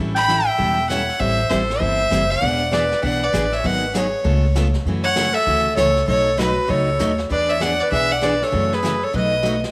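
Down-home and swinging, this western swing excerpt puts an intense, bowed fiddle up front carrying the melody with light vibrato. A distant, roomy clarinet adds a scooped, jazz-style second line, while a bright dreadnought acoustic guitar picks the accompaniment over woody, thumpy pizzicato upright bass with gut strings and tube saturation. A brushed jazz kit sits in the background and adds a drum fill at 9.4 seconds, and the whole band moves through a jazzy chain of ninth and seventh chords in a moderate echo-chamber reverb.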